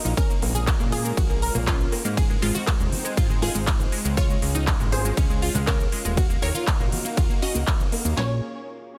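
This bittersweet, expansive progressive house drop opens at once with a bright, lush unison pluck carrying the melody through dub echo. Beneath it sit a dark, smooth analog pad holding chords with chorus, a tight, nasal sequenced synth running arpeggios with chorus and dub echo, and a fat, detuned sawtooth bass; all three pump against the sidechain. From 0.1 seconds an overdriven electronic layer brings crisp hi-hats, ride cymbal, shaker and handclaps, with its cymbals, hats and percussion pumping too. At 0.2 seconds a punchy, overdriven electronic kit joins up front, driving the straight beat with kick, snare and more claps. Very quiet acoustic congas and bongos add soft-handed, saturated colour as the harmony cycles Bbm7, Ab, Db and Ebm7, all set in light reverb under a dense, heavily limited master.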